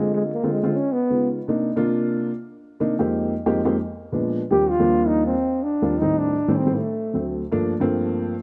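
Dark production with a moderate spring reverb frames this fiery, sultry jazz fragment, where a woody, boxy upright piano with long sustain accompanies throughout while an up-front, breathy trombone sings scooped notes with a smooth top, falling silent at 1.3 seconds and returning at 4.5 seconds over richly extended chords.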